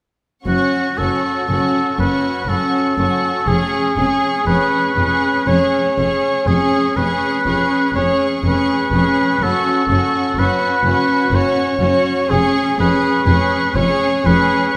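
This classical passage, cut from a longer slow romantic movement for symphony orchestra, carries a yearning, elegiac mood at 60 BPM in a rubato 3/4, in F# minor with tuning set to A4 = 436 Hz. From 0.5 s a lush violin section holds the melody on a high C#6 with soft-attacked, expressive vibrato. A second violin section adds a clear, even line beneath it. A solo oboe, placed up front with light vibrato and a smooth top, carries its own second line and stands out most plainly. Violas hold a focused, close accompaniment on C#4, while cellos sit in the background and double basses anchor the bass, both bowed with vibrato. The harmony moves between F# minor and C# major over E#, and the whole ensemble sounds within a wet concert hall reverb before the parts end between 14.3 and 14.8 s.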